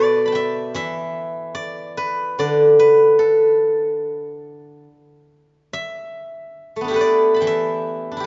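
Serene and flowing, this short passage of Chinese traditional music presents a solo steel-string zither, cut from a longer piece. The playing moves in a free, rubato feel over a loose 4/4 pulse, letting each phrase breathe. Plucked with fingerpicks, the acoustic zither sounds bright and silvery, its ringing tones spanning from B2 up to B5. The instrument sits up front, while a moderate concert hall reverb, lingering about 2.3 seconds, gives the notes a spacious halo. The top end is gently rounded off, with nothing above about 7.6 kHz across the full 8.3 seconds.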